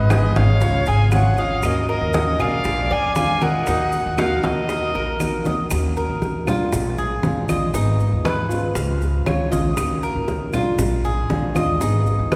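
A cavernous church reverb surrounds this short cut from a longer Cuban son and guajira piece, a nostalgic, danceable tune in Eb minor at 118 BPM in a straight 4/4. A dark, intimate violin carries the melody with light vibrato and an airy sul tasto bow, shadowed in the background by a breathy, reedy concert flute on a second line. Both melody parts stop at about 5.5 seconds, just as a drum fill at 5.2 seconds leads into the second section. Underneath, a fresh-stringed nylon-string guitar is fingerpicked as accompaniment, a metallic Cuban tres picks double-string arpeggios, and a thumpy, woody pizzicato upright bass sits up front. The percussion brings low-tuned, thin-skinned congas in the background, tight, high-tuned bongos kept very quiet, saturated claves and grainy, close maracas. The chords cycle through Ebm7, Bb7, Abm and Db.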